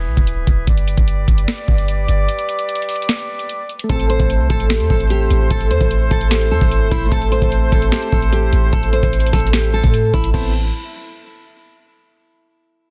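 Dry, dense and heavily limited, this hard-hitting, menacing half-time trap excerpt opens with clear woodwind section chords in light vibrato over a boomy, dark 808-style bass and an up-front trap drum kit of knocking kick, sharp snare, bright hats and crash, and after a break from 2.3 to 3.9 seconds a full-bodied, fingerpicked nylon-string guitar with delay and audible finger squeak carries the melody while soft, round, chorused electric-piano-like synth keys add mellow accompaniment.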